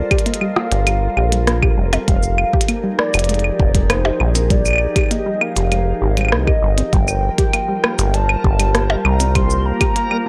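A straight 4/4 pulse at 99 BPM from a deep electronic kick and a clicky, up-front glitchy kit of hi-hat, rim click, claves, cabasa and percussion blips drives this cerebral, intricate IDM excerpt in G phrygian, where a rubbery, resonant acid bass sits under a glassy FM pad moving from Gm11 to Fm11 and back, a lo-fi detuned pluck arpeggiates in the background with chorus and analog delay, a nostalgic lead with vibrato sings between C5 and C6 through tape echo, and a reversed granular texture swells in at 8.3 s, all captured dry with gritty transformer saturation and cassette tape grain.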